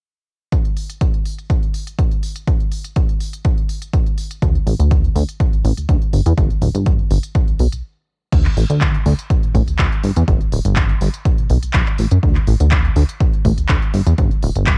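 Recorded at home on cassette with very little room sound, this joyful, feel-good piece of filtered disco house is cut from a longer track and moves at 123 BPM in a straight 4/4. An electronic kick drum sits up front with a punchy analog thump from 0.5 seconds, dressed in studio reverb and cassette tape character. Alongside it, a layered, produced house kit adds handclaps, crash cymbal and crisp hi-hats, with sidechain pumping on the hats and cymbals plus the same studio reverb and tape color. At 4.4 seconds a plucky analog bass arrives up front, funky and evolving, blending sawtooth, square and triangle tones with ring modulation, a fast attack and a mellow decay, moving between D1 and F#2 under sidechain pumping and a low-pass filter. After a brief stop at 7.8 seconds, the groove returns with a filter sweep on the bass carrying it to the close.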